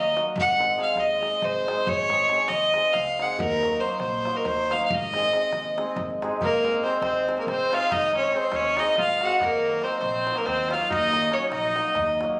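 In a straight 7/8 at 279 eighth-note beats per minute, this festive Balkan wedding-band excerpt moves with virtuosic drive in A-flat mixolydian, cut from a longer piece and tuned slightly below standard pitch. A single bowed fiddle carries the melody up front, its nasal, reedy gut-string tone given a boxy edge and a slapback echo. Beneath it, a hammered dulcimer rings and shimmers in the accompaniment, an upright bass plucks woody, thumpy low notes, and a large clay-shell darbuka with a natural skin sits deep in the background under soft hands. At 6.4 seconds, as the opening section repeats, a clear, punchy trumpet joins with a classical-style second line, its vibrato sounding distant and roomy. The harmony shifts between A-flat major and E-flat minor, and the whole thing comes across as a compressed room recording captured on a phone, with a light studio reverb.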